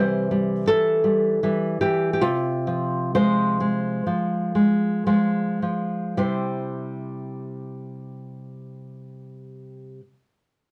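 A fingerpicked nylon-string guitar opens this tender romantic piece, played solo in a classical style and set up front in the mix. The rubato feel lets the time breathe, and the playing slows down through the opening phrase until 6.2 seconds. The harmony moves from C to F minor over C at 2.2 seconds, lending a brief shade of longing before settling back on C at 6.2 seconds as a new section begins. Finger squeaks on the strings add an intimate, human touch to the acoustic tone. A moderate small-room reverb and a dark, warm production give the sound a close, hushed quality in this short passage cut from a longer piece.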